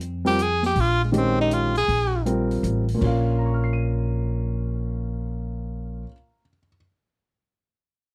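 A dry, close 1970s-style studio sound in a small room frames this intense, hypnotic modal jazz fragment in 3/4 at 160 BPM in Bb dorian: a bright, up-front tenor saxophone with vibrato, scooped notes and slapback echo takes a brief solo that ends at 2.2 seconds, a woody pizzicato upright bass anchors the swing, a mellow, vintage grand piano with audible action noise and deep bass carries on to the end, and an open acoustic drum kit with dark cymbals and a boomy kick drops out at 3.1 seconds as the harmony moves from Bb13sus4 to Bbm.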